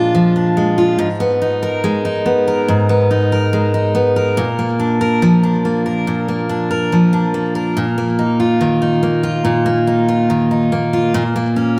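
Melancholic and longing, this slow pop fragment at 71 BPM features a solo picked steel-string acoustic guitar, full-bodied and jumbo-sized, sitting up front with audible finger squeak, its notes trailed by digital delay and bathed in a lush hall reverb as the harmony drifts from Bb7 through Abmadd9 and Bb to Bbsus4 before ending on a rootless Gb/Bb at 11.1 seconds.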